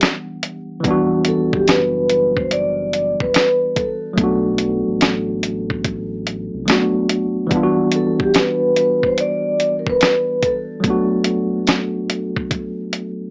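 Heard through cassette hiss and a small-speaker tone in a modest studio room, this reflective, hazy lo-fi hip hop excerpt opens on a worn, slightly out-of-tune tine electric piano, lightly overdriven and up front, alongside a gritty, compressed sampler-style drum kit with a thumpy kick and medium-tuned snare. A deep, sine-like sub bass with an octave sits underneath from 0.8 to 6.7 seconds, while a mellow, airy vibraphone with soft mallets and slow motor vibrato carries the melody, and a jingly tambourine stays in the background. The swung groove moves between Em9 and Bm7 chords before a drum fill at 12.5 seconds.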